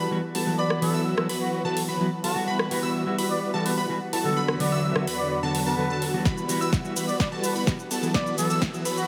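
Festival progressive house build-up, euphoric and anthemic, cut from a longer piece, where a veiled, cup-muted trumpet carries a classical-style melody through vintage sampler grit and digital delay, over a dark, clean electric guitar and a thick, airy unison pad in the background. A huge detuned supersaw riff with phaser and filtering, plus a catchy plucky lead playing high chorused arpeggios, pump against the sidechain, while a big-room kit with punchy snare and metallic hats enters at 0.3 seconds. A punchy, up-front electronic kick arrives with the drum fill at 6.3 seconds, and a very quiet riser enters at 7.8 seconds, all within a lush hall reverb.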